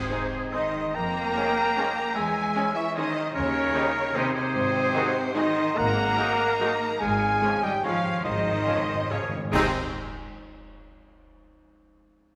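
Festive and elegant, this excerpt from a longer orchestral ballroom waltz sways in 3/4 with a rubato feel. A lush violin section carries the melody with vibrato and a soft attack, while a clear solo clarinet and a distant, vibrato-touched oboe add second lines, joined by a very quiet, focused second violin part. Mellow French horns and a tight, vintage-tinged trombone section hold sustained chords, a roomy trumpet section adds stabs in the background, and rich, distant violas fill in the accompaniment. Underneath, a bright, focused cello section and smooth, even double basses share the bass, and a very quiet concert harp rings out thumb-plucked arpeggios until 10.8 seconds. Round, soft-mallet timpani on calf heads play a fill from 7.0 seconds, and close, dry clash cymbals and concert bass drum mark an accent at 9.5 seconds as the harmony returns home, all set in a wet scoring-stage reverb.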